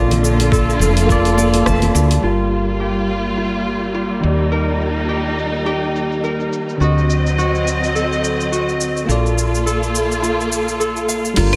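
A moderate, lush hall reverb wraps this smooth, warm sunset chillout passage, cut from a longer piece and set at 105 BPM in 4/4 with a gentle swing on the sixteenths, tuned slightly low to A4 = 436 Hz. An up-front, rich bowed string section holds soft-attack sustained chords with expressive vibrato, while a woody fretless bass, round and dark with tube saturation, anchors the low end just as prominently. A bell-like tine electric piano comps brightly through a low-pass filter and tape echo, and a fingerpicked concert harp adds ringing arpeggios through the same treatment. The electronic R&B kit stays soft and tape-toned, with claves, crash, hi-hat, rim click and shaker, joined briefly at the start by very quiet, close bongos and congas, and a gritty, overdriven electronic kick thumps in the background from 0.5 seconds, drops out, then returns at 11.4 seconds. After a band accent, filter sweeps on the drums and the electric piano begin at 2.2 seconds as the harmony moves from Bbmaj7 through Gm7, Ebmaj7 and a tense D7b9 before settling back on Bbmaj7.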